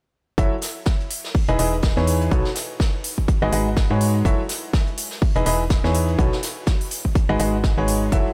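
Soulful and bittersweet, this swung piano house excerpt sets a clear, woody upright piano riff with audible action noise and a diffuse ambient delay over a hollow, organ-like FM bass, a punchy electronic kick, crisp electronic hi-hats and a distant, roomy brush kit on hi-hat and snare, with the piano, bass and brushed hats pumping to the sidechain as the chords cycle through F#m7, Emaj7, B9 and G#m7.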